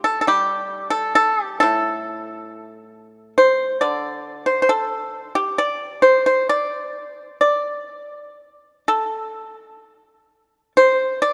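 A mellow, percussive solo pipa, plucked with fingerpicks and sitting dry and up front, carries this elegant, contemplative Chinese traditional piece, moving freely in rubato around 60-69 BPM in 4/4 across a range from A2 to D5. A lush hall reverb with a 2.4-second tail surrounds the instrument in a rough home-demo mix. The opening passage gives way to a new section at 9.4 seconds before this short cut from a longer work ends at 11.3 seconds.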